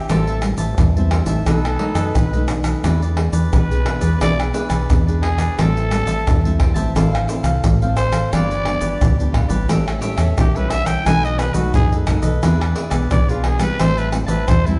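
Set in a wet, roomy studio reverb with the band playing live together and a softened top end, this lively, bittersweet samba and choro excerpt in A minor at 88 BPM features a raspy, growling trumpet soloing with light vibrato and scooped notes over crisp picked cavaquinho, full-bodied fingerpicked classical nylon-string guitar, a dark, round dub-style fingered electric bass, and up-front, compressed, saturated percussion of egg shaker, deep surdo, pandeiro and tamborim played with soft hands.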